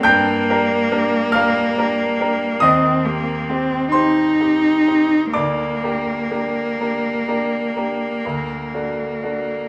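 From the first moment, a bowed cello and a grand piano sound together in this brief fragment of a romantic classical duo, solemn and melancholic in G minor. The single cello carries the melody between Bb3 and Eb4, its tone rich, smooth and even with vibrato and a smooth top, placed up front. The piano accompanies across a broad span from D2 to G6, bright and brilliant with an open character and short sustain, also close in the mix. The music moves slowly in 12/8 at roughly 41-48 dotted-quarter beats per minute, with a rubato feel that lets the pulse breathe. The harmony moves from G minor through C minor over Eb to G minor over D, reaching a D chord at 8.2 seconds. A recital hall's reverb surrounds both instruments with a lingering decay of about 1.4 seconds.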